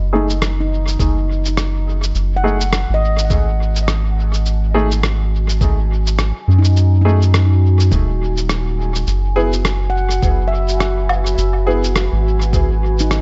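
Hazy and deep, this ambient dub fragment moves at 104 BPM in 4/4 with a swung sixteenth-note feel, resting in F# dorian as it shifts from F#m69 to E/F# at 9.1 seconds. A dark, moody pad of detuned sawtooth unison and sub octave fades in across the whole passage, its slow-attack chords softened by chorus and its own reverb. Beneath it, a round, up-front sub bass of triangle and square waves holds the low end, while a clear, woody upright piano with a worn, slightly detuned character drops filtered stabs into dub echo. A mellow handpan, close-miked and played with soft fingertips, rings out meditative arpeggios from 0.2 seconds, also trailing dub echo. Sampler-style cabasa, rim click and woodblock, pitched down, muffled and tape-tinged, echo through the groove, joined at 1.0 seconds by a compressed, thumpy kick, all set in light digital ambience with a darkened top end.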